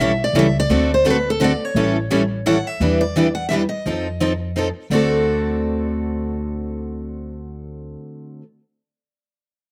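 Recorded outdoors with a dry sound, this short cut from a longer jazz manouche piece in 3/4 swings along with a charming, lively mood. A bright, up-front picked steel-string guitar carries the melody, with finger squeak audible on its fresh strings, while two more picked steel-string guitars supply the accompaniment, one of them a full-bodied jumbo. Underneath, a pizzicato upright bass with gut strings gives a woody, dark, thumpy pulse, and the harmony moves from A7 and D7 through Em7 and F7 before settling on D7 at 4.9 seconds.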